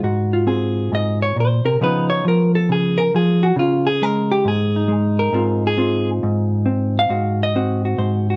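A moderate studio reverb surrounds this brief passage, cut from a longer piece, with a faint mains hum sitting underneath. It is playful solo jazz in 4/4 with a swung eighth-note feel, carried by a single electric hollow-body jazz guitar. The guitar is placed up front, its clean, fingered tone dark and compressed as it ranges from Ab2 up to F5. The harmony opens on Ab13, moves to Db9 at 1.8 seconds and settles on Ab6 at 5.3 seconds. The result is a warm, good-humored moment of solo guitar jazz.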